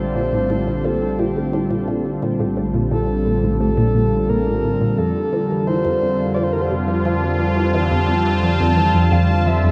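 Hypnotic and expansive, this short cut from a longer piece of ambient, sequencer-driven space music moves at 87 BPM in a straight 4/4, tuned slightly low to A4 = 436 Hz. A breathy, flute-like synth lead carries the melody up front between G4 and A5, its soft, warbling vintage tone colored by chorus, vibrato and tape echo. Beneath it, a sweeping resonant pad holds sustained chords from D3 to A5, evolving and airy with a bright, detuned sawtooth edge and a noise layer under chorus. A deep, round sine sub bass anchors the low end, while a juicy, squelchy blip pluck enters at 0.2 seconds with a riff between F2 and F3, treated with phaser and tape echo. The harmony shifts from Bbmaj7 to F6 at 5.0 seconds, and the whole mix sits in a dark, huge wash of reverb that trails on for 8.6 seconds.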